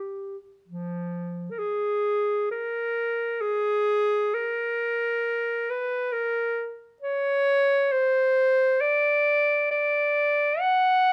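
Meditative and lonely, this classical piece for unaccompanied clarinet unfolds freely and expressively at around 66 BPM in 4/4, its rubato feel letting the pulse bend and breathe. The clarinet carries the whole performance alone, sounding bright and placed up front, with playing in a classical style that spans from E#3 up to F#5. A light reverb gives the instrument a gentle sense of space. The music stays within a single section from 0.0 to 11.1 seconds, a brief fragment cut from a longer work.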